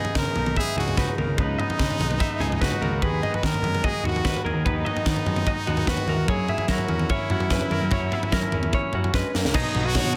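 Math rock meets midwest emo in this intricate, playful fragment at 147 BPM in straight 4/4, moving through C#m9, G#m7/D#, F#7 and B69. A brilliant, forceful trumpet carries the pop-style melody with vibrato and slapback echo over bright twelve-string electric guitar arpeggios and a twangy, clean electric guitar accompaniment in the background, both also treated with slapback echo, while a fuzz-drenched picked bass rumbles underneath. Up front, an airy, polished acoustic fusion kit with a high-tuned snare and punchy kick drives the groove to a drum fill at 9.1 s, and at 9.5 s a very quiet, double-tracked, biting overdriven guitar riff slips in, all set in a small room with light reverb.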